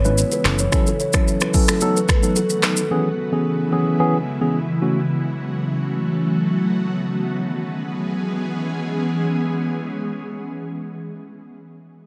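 An ethereal, airy pad stands out in this sunny, romantic afrobeats excerpt, its detuned sawtooth chords unfolding with a slow attack and long release, thickened by ensemble chorus and its own reverb, and sustained until 11.4 seconds. A mellow, clean tine electric piano sits up front in the accompaniment for the first 5.0 seconds, while a layered deep house drum kit with a deep kick, smooth hi-hat, finger snaps, handclaps, rim click and shaker, plus soft clipping on the snare, sets a straight 110 BPM groove in 4/4 only at the very start. A dark, round fingered electric bass, faint congas and a woody, hollow kalimba riff with delay each appear just briefly at the opening. The harmony in E major moves through F#m7, B7 and E6, repeating the cycle as the passage shifts into its second section. Light digital ambience surrounds the parts, and the master is dense and heavily limited in a modern style.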